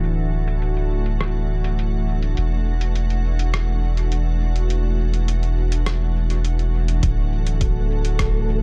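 A straight four-four pulse sets the rhythm of this short ambient dub fragment, carried at first by a lo-fi, sampler-style kit of hi-hat and rim click that sounds muffled, pitched down and overdriven, with a filter sweep running across its opening stretch and dub echo trailing its hits. Underneath, a round, soft sub bass sits up front and holds the low end throughout, while an organ-like pad sustains calm, full-bodied chords colored by ensemble chorus and its own reverb, moving from D to E9sus4 and back to D. The mood is deep and spacious, and the overall mix is dry yet echo-heavy. At 7.0 seconds an overdriven electronic kick joins in the background, adding a deep, layered thump as the harmony returns to D. Shortly after, at 7.3 seconds, a breathy, wind-like tuned noise texture drifts in with reverb, lending an airy shimmer to the closing moments.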